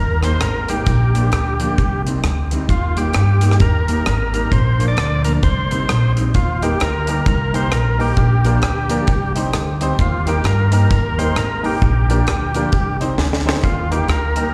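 A gritty, overdriven tonewheel organ carries the melody through this upbeat, cheerful ska excerpt in Eb major at 132 BPM with a swung feel, its key click and percussive attack trailed by dub and slapback echo, over a growly, woody pizzicato upright bass and a dry, deep reggae drum kit with a high-tuned snare and tight kick, both up front. A dark, clean electric guitar sits in the background with its own dub and slapback echo, while a polished upright piano adds stabs from 6.6 seconds, and a short drum fill at 13.2 seconds leads back to Eb. The sound is that of a live gig heard through the venue's PA, with recital hall reverb around the band.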